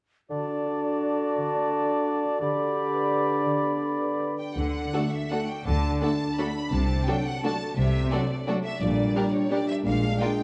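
Sweeping and festive, this excerpt of an orchestral ballroom waltz in D major sways in 3/4 with a rubato pulse of 154-186 BPM, opening with an airy flute, a clear oboe, a background clarinet and a warm bassoon over ringing, fingerpicked harp arpeggios that continue to the end. At 4.4 s an intense, lush violin section takes the melody, joined by a focused cello section and a smooth double bass section below, distant violins and violas with rich vibrato in the background, and mellow, close-miked French horns holding sustained chords. The orchestra sits in a dark production with moderate scoring-stage reverb, as the harmony moves from D through D7/C toward Gm/Bb and Bb7.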